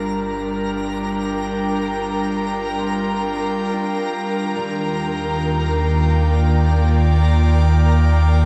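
Reflective and spacious, this short ambient passage in G minor drifts in free time, cut from a longer piece and moving from Gm7 to Ebmaj7 at 4.4 seconds. An airy, breathy pad sits up front with sustained chords, its detuned tone softened by chorus and lifted by shimmer reverb. Beneath it, a round analog bass holds deep, dark sustained notes, while a twinkling granular texture sparkles high above with its own reverb and an octave-up shimmer. A concert harp plays fingerpicked arpeggios throughout, ringing but very quiet in the mix. Everything sits in a wet cathedral-like space with a long 5.7-second decay, colored by the faint grain of cassette tape and a hint of small-room ambience.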